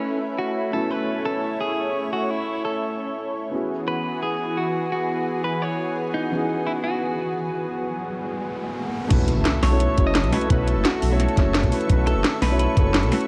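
Light reverb and digital ambience surround this uplifting liquid drum and bass excerpt, where a clean, picked electric guitar carries the melody through spring reverb and delay. It sits over a dark, mellow concert grand piano with delay and a lush, thick unison pad whose chorused, sustained chords move between B9sus4 and F#9sus4 with sidechain pumping. A riser enters at 7.2 seconds and lands on an impact as the drop hits at 9.1 seconds, bringing in a deep, rumbling detuned saw bass, a gritty, thumpy electronic kick, and an up-front kit with a cracking snare, metallic hi-hats and crash cymbal, low-pass filtered and re-recorded in a small room.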